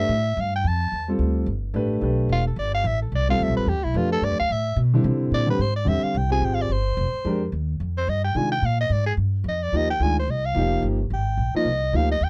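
A growling soprano saxophone opens this modal jazz excerpt at once, soloing over baby grand piano and upright bass in D dorian at a brisk 218 BPM in a swung 4/4. The mood is intense yet cool. The saxophone is raspy and gritty with vibrato and a smooth top end, sitting up front in a clear jazz voice. Beneath it, the piano offers natural, long-sustaining accompaniment, while the pizzicato upright bass on gut strings gives a woody, thumpy foundation. The harmony moves from Dm69 to C7b13 before shifting to F dorian on Fm9 at 6.1 seconds, where a second passage begins. The dry, close sound recalls a 1970s studio, with little reverb and all three players heard up front.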